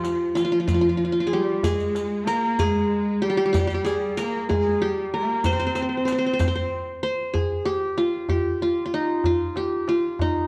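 Longing and soulful, this Arabic maqam ensemble piece moves at a slow 63 BPM in a straight 6/8, tuned to A4 = 435 Hz, and is cut from a longer piece. Up front, the plectrum-plucked qanun carries the melody from Eb4 to C5, its triple strings giving a bright-edged voice that runs through the whole passage. Beneath it, a lush, bowed symphonic cello section, also up front, adds a smooth second line with vibrato between F3 and C4 until 6.7 s. A deep, large clay-shell darbuka with natural skin holds the percussion almost to the end, while a compressed, saturated riq with dark jingles sits in the background and drops out at 6.5 s. The ensemble sounds warm in a moderate recital hall, yet the worn cassette tape lends a warbling pitch drift, and a new section begins at 7.3 s with the qanun and darbuka carrying on.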